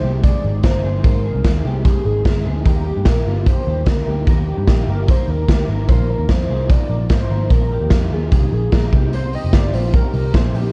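An echo-heavy, cassette-tape sound with studio reverb wraps this restless, bittersweet slice of jangly indie pop, cut from a longer piece and moving at 148 BPM in a straight 4/4 over Ab, Eb, Bbsus4 and Cm. A velvety, detuned sawtooth synth lead with chorus, vibrato and dub echo carries the melody. Two slightly broken-up electric guitars through a small old amp sit in the background, one playing a lo-fi, picked accompaniment and the other compressed, picking arpeggios, both with ensemble chorus and dub echo. Beneath them, a round, foam-muted vintage bass anchors the low end, while an up-front raw garage drum kit with a punchy kick, medium-tuned snare and rolled-off top plays from 0.2 s to 10.6 s in a bright stone room.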